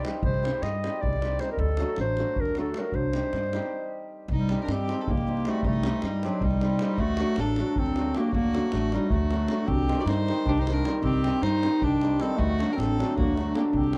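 A soft-attacked, smooth-topped clarinet leads up front in a classical solo style, carrying a restless, virtuosic Balkan wedding-band melody in 7/8 over shimmering, ringing hammered dulcimer, woody pizzicato upright bass and a deep, distant davul. After a brief stop between 3.7 and 4.3 seconds, a single bowed violin enters with a pure, floating sul tasto second line. The chords move between Cm and D in a dry, close studio sound of 1970s character, in a passage cut from a longer piece.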